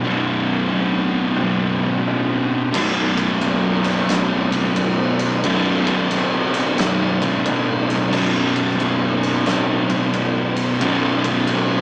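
A swung 4/4 groove drives this hypnotic, heavy stoner and doom metal fragment, built on a low fuzz riff: one distorted guitar sits up front, a dark double-tracked fuzz guitar lies very quietly beneath it, and a thick, shadowy fuzz guitar fills the background. A growly, overdriven fingered bass joins at 0.1 seconds. At 2.7 seconds an oversized, low-tuned acoustic kit enters with a boomy kick, fat snare, crash and ride in a big pumping room, gritty and saturated. The whole thing has the rough, small-speaker sound of a rehearsal room with light reverb.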